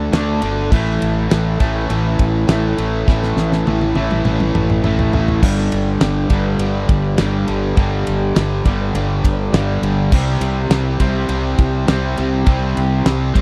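A straight 4/4 classic rock groove at 102 BPM drives this sunny fragment, with a damped 70s drum kit entering at 0.1 s (fat snare, tight kick and dark cymbals up front, plus a fill from 3.1 to 5.4 s) beneath a direct, up-front fingered electric bass, two double-tracked picked guitar riffs (one from a bright, overdriven semi-hollow and the other crunchier), and a very quiet, lush vintage string machine holding slow-attack chords with ensemble chorus, over a D, A, G, C progression in a close, dry 1970s-style studio sound.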